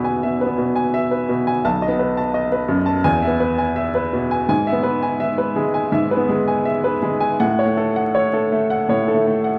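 A dark, warm production with vinyl crackle and a wet, large-studio reverb frames this short cut from a longer romantic character piece for solo piano, passionate and hopeful in mood. A clear, woody upright piano sits up front with a polished presence, moving at around 83 BPM in 4/4 with a rubato feel and ranging from B1 to A5. Its harmony circles E, B7 and E/G# before settling toward F#m/A, with E major established from 4.5 seconds.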